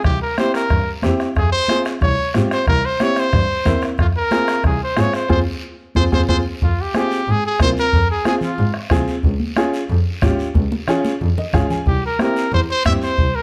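A driving straight 4/4 cumbia groove at 183 BPM is set by a soft-beater bombo, damped high-tuned congas in the background and a raspy guiro, under a bowed double bass that glides with vibrato and portamento. Out front, a bright solo trumpet carries a fiery pop-style melody in F harmonic minor, settling into F minor at 6.6 s, while a worn, woody, slightly detuned upright piano with long sustain plays accompaniment over chords moving between C7, Fm and Db. A band accent lands just before the key change, and a drum fill and piano fill lead into the trumpet's return at 11.9 s in a dark, lightly reverberant mix.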